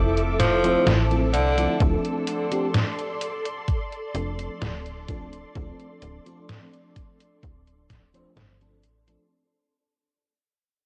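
A faded, nostalgic vaporwave fragment at 64 BPM opens on a lush FM electric piano with a soft pad layer, wrapped in tremolo, ensemble chorus and tape echo, over silky string-machine chords and a snappy, metallic slap-like FM bass, moving from Fmaj7 to Dm7. A gritty, sampler-style 8-bit drum machine with a fat snare and hi-hat joins at 0.2 seconds, and a raspy, forceful tenor saxophone with vibrato cuts in briefly from 0.4 seconds, soaked in cassette tape and echo. A thumpy, tape-softened electronic kick arrives at 1.8 seconds, all within a light reverb and a home-cassette haze as the whole passage fades out.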